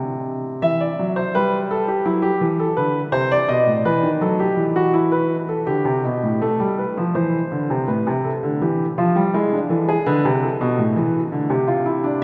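This classical piece is a baroque-style two-part invention for solo grand piano in A minor, cut from a longer work and moving at 83 BPM in a straight 4/4. The mood is driving yet contemplative. The concert grand sits up front, with a deep bass and an open, warm tone across its range from A2 to E5. The harmony first circles through E minor, touching on F-sharp half-diminished and B7. At 6.4 seconds a second section turns toward A minor, passing through B half-diminished over A and E7 before settling back on A minor at 10.8 seconds. A long, wet cathedral reverb surrounds the playing, giving it the spacious feel of a church or concert hall.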